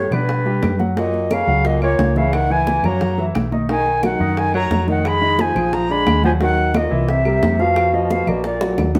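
Fiery and driving, this Afro-Cuban jazz excerpt moves at 177 BPM in a straight 4/4, cut from a longer piece. A breathy, bright concert flute carries the melody up front with a straight, tongued, slightly unsteady tone, while a mellow baritone saxophone plays a second line beneath it with vibrato, subtone and scooped notes in a vintage jazz style. A polished grand piano supplies present accompaniment, and a hollow-body short-scale fingered electric bass sits up front, dark, round and punchy through its amp. Tight, high-tuned bongos sound close and dry, high-tuned damped congas hit with hard hands from the background, and woody claves tick along in a small room, all entering at 0.1 seconds. The harmony runs restlessly through chords such as Dbmadd11, Bmaj7, Fm7b5 and Bb7b9, a drum fill arrives at 8.6 seconds, and the whole band is heard from further back in the room through a wet studio reverb.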